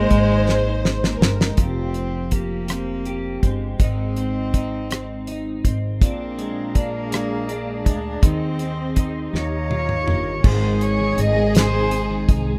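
A fat-snared, damped 70s drum kit sits up front, dry and tight, anchoring this swaying, heartfelt pop ballad in a lilting six-eight, with fills at 0.5 and 9.3 seconds. A single bowed cello carries the melody throughout, its nasal, reedy gut-string tone touched with light vibrato and set back at a distance in plate reverb and tape echo. A bright, clean twelve-string electric guitar, double-tracked and compressed, picks the accompaniment while a woody, growly pizzicato upright bass thumps out the low end. A lush violin section adds a smooth second line at the opening and returns at 10.4 seconds, and a veiled, con sordino string section hums sustained chords in the background, rejoining at 6.0 seconds. The rough home-demo mix, with its light reverb, feels like a heartfelt fragment cut from a longer piece.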